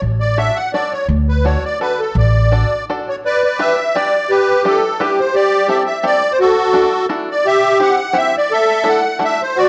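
A dark, warm production sits in a reverberant recital hall, giving this short cut from a longer piece a sense of space. It is a charming, whirling musette waltz in 3/4 at 170 BPM, with a swung, rubato lilt, opening in D major and moving to G major at 3.2 s. The reedy musette accordion carries the melody, close-miked, dry, full and up front, its musette tuning lending a shimmering edge. Beneath it, a twangy, percussive bluegrass banjo plays fingerpicked accompaniment further back in the mix. A woody, thumpy upright bass with gut strings plucks the low end up front before dropping out at 2.6 s. The harmony drifts through colourful chords such as Dmaj7, Em7 and Dadd9 before settling on an unresolved Asus4.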